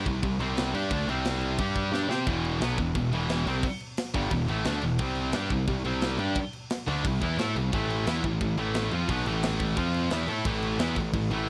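Dark and epic, this heavy metal excerpt drives at 176 BPM in a straight 4/4, centred on E minor and tuned slightly below standard pitch. Two high-gain electric guitars play the riff together throughout, one bright and up front, the other with a scooped, hollowed-out tone, both picked and heavily distorted across a range from E2 to C5. Beneath them, a picked electric bass adds a growly, fuzzy overdrive that sits prominently in the mix. A tight acoustic drum kit, placed mid-forward, with a medium-tuned snare, tight kick and crash cymbal has a rolled-off top, and a short drum fill at 1.9 seconds leads into a repeat of the opening section at 2.3 seconds. The harmony moves through power chords on C, G, A and F around an E minor chord, all captured in a dry sound with little reverb.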